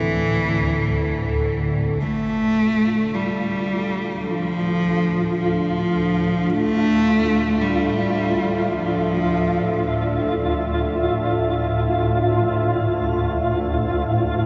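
Drenched in a huge, cavernous reverb with a long seven-second tail and a dulled top end, this dark ambient drone in D minor drifts in free time, unsettling and dark. Beneath it all a swarming, tense, detuned drone sits low, granular and evolving, fading in as a deep, full-bodied analog pad with chorus and shimmer holds moody sustained chords and gradually fades away. Up front, a single bowed cello carries a dark, expressive melody with vibrato and portamento, close and intimate against the vast space, before falling silent at 10.4 s. A huge, bright impact lands in the background at 2.0 s, as the harmony shifts from C over D to a D minor add nine chord. From 2.7 s a flickering, grainy texture settles in, mellow and sustained, its shimmer adding to the sense of an endless, shadowy cavern in this excerpt from a longer piece.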